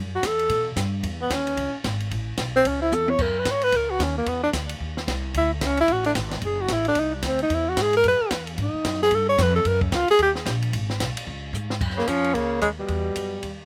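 The sound is dry and close, recorded outdoors with little reverb, and this short cut from a longer piece moves at a brisk 223 BPM in 4/4 with a swung eighth-note feel. It is playful, swinging small-group jazz in the bop vein, led by a breathy tenor saxophone that sits up front as soloist, its mellow, whispered tone marked by vibrato, soft attacks and scooped notes. Beneath it, a woody, growly upright bass plays pizzicato on steel strings, while a compact cocktail drum kit with dark cymbals, a high-tuned snare and a punchy kick keeps time on ride, hi-hat, crash and toms, adding fills at 2.9 and 11.5 seconds. Near the close a second tenor saxophone with a clear, vintage tone enters at 12.0 seconds for a brief lower line. The harmony roams restlessly, starting on F#m7 and arriving at F#maj7 as the final passage begins.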